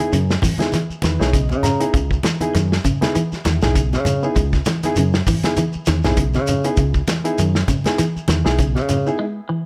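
Funky and intense, this afrobeat excerpt rides a swung sixteenth-note groove at 99 BPM in 4/4, sitting on a single C#m9 chord throughout. A fingered electric bass anchors the low end with a dark, round, direct tone placed up front, alongside a soul drum kit with a tight kick, medium-tuned snare and hi-hat, its rolled-off top keeping it warm in a small room. Low-tuned congas with a thick-skinned sound and a grainy shekere tucked into the background fill out the percussion. A clean, bright electric guitar picks arpeggios through a phaser, while a barky, reedy electric piano plays accompaniment through its built-in speakers with light overdrive and spring reverb, adding a fill between 0.7 and 1.9 seconds. The parts drop away at 9.2 seconds for a brief break, leaving the guitar ringing until 9.7 seconds, all set in light reverb.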